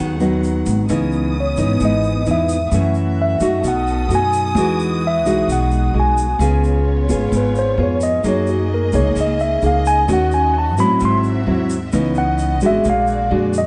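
A mellow, clean tine electric piano carries the solo melody from 1.4 seconds in this intimate, smooth bossa nova excerpt in C# minor at 130 BPM, over an up-front, thumb-plucked nylon-string guitar, a woody pizzicato upright bass, a dark bowed string section with vibrato and portamento holding close sustained chords, and a grainy, bright egg shaker, all set in light reverb as jazzy chords such as C#m9, Emaj9 and G#7b13 move beneath.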